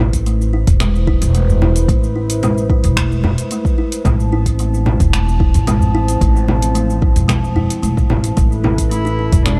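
A woody, thumpy upright bass sits up front in this mystical, organic downtempo piece, its gut strings plucked low beneath everything else. Around it a soft, hollow-sounding kalimba plays short, mellow arpeggios through a delay, while a smooth, detuned analog pad holds sustained chords with chorus and sidechain pumping. A deep house kit of congas, finger snaps, hi-hat and shaker runs with an overdriven edge alongside a deep, layered electronic kick, both given a small-room character. From 0.7 s a very quiet acoustic udu adds live-room colour, and at 8.9 s a single bowed cello floats in with a pure, sul tasto tone. Light reverb and a dark, warm production frame this short cut from a longer piece as the harmony moves from Amadd9 to F and settles on Asus2.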